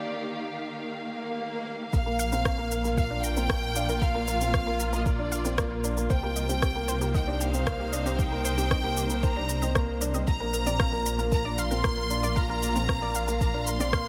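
This hopeful, tender piano-and-strings electronica opens on lush, bowed orchestral chords in Bb major at 115 BPM, pumping against the sidechain, while an electronic swell at 1.1 seconds leads the brief build-up into the drop at 1.9 seconds. There a biting, intense violin section takes the melody high above with digital delay, a round, detuned analog pluck sits back with chorused arpeggios, and a dark, rumbling, saturated saw bass pushes up front over a soft electronic kick and layered shaker and rim click. From 2.1 seconds a woody upright piano adds a delayed riff, all within a small, lightly reverberant room as the chords move from Bb through Cm7 and back.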